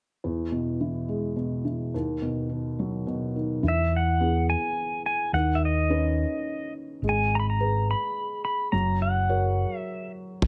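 Close, detailed and nearly dry, this intimate, heartfelt acoustic folk-pop ballad in 3/4 opens on a soft, mellow felt-muted upright piano with audible action noise, joined by a dark, round fingered electric bass at 3.6 s and, at 3.7 s, a twangy, compressed pedal steel guitar carrying the melody with fingerpicks, slide and volume swells, while an unplugged drum kit's punchy kick and ride cymbal, played with bundle sticks, arrives only at 10.4 s just before the excerpt closes.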